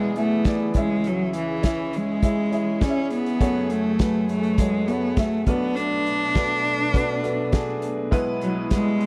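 Piano-driven pop in F# minor at 102 BPM, this bittersweet, dramatic excerpt sets a clear, focused bowed cello melody with vibrato up front over a bright, brilliant upright piano with long sustain, a lush string section holding sustained chords in the background, and a loose indie drum kit with tight kick, medium-tuned snare and hi-hat entering at 0.2 seconds, all captured in a dry, close 1970s-style small-room sound as the chords move from E/B through C#m, F#madd9 and Bm7.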